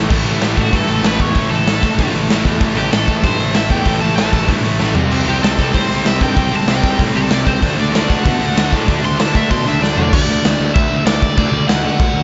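This energetic, rebellious punk rock excerpt opens at once on two distorted guitars, one sludgy and overdriven in the background, the other tight and bright, riffing over a growly, punchy fuzz bass that also sits back in the mix. A raw garage drum kit drives the straight 4/4 pulse at 192 BPM, sitting up front with a punchy kick, a medium-tuned snare, hi-hat, toms and crash cymbal, and its gritty, saturated sound carries a pumping, stone-room ambience with a rolled-off top. From 0.6 seconds a cranked stack guitar takes the melody, its overdriven tone colored by tape echo as it plays a solo high above the riffs, while the harmony moves from A5 to C5 to D. Short drum fills punctuate the passage, and at 10.1 seconds the tight guitar drops out as the music shifts into a new section for its final couple of seconds. The mix is dry and dark-edged overall, giving the whole fragment a loud, unpolished garage urgency.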